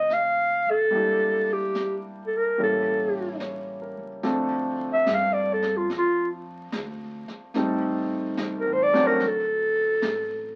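A slow swung 4/4 at 72 BPM carries this late-night, romantic jazz ballad fragment, with brushes on a high-tuned snare and hi-hat keeping time from 0.1 seconds while a woody pizzicato upright bass sits in the background. Up front, a mellow clarinet with light vibrato, subtone and scooped notes sings the melody and takes a solo from 4.2 seconds, over a clear, intimate grand piano whose action noise is audible until it drops out at 9.2 seconds. A small room's short reverb and the crackle of a very old 78 rpm record give the whole a faded, nostalgic patina as chords like Bb69, A7b9 and Dm7 drift by.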